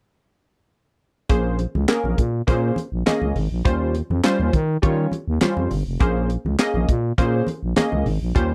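A dry, close studio sound in the 1970s style frames this slick, funky excerpt of early-eighties boogie funk at 102 BPM in Bb dorian, with everything but the congas arriving at 1.3 seconds. Up front, a tight acoustic drum kit with a high-tuned snare, handclaps and hi-hat sits beside a growling, thick FM bass, while a punchy, detuned sawtooth polysynth comp with a filter pluck and chorus moves from Bbm9 to Eb13 and back. Damped, low-tuned congas played with soft hands join at 1.6 seconds, tucked in the background.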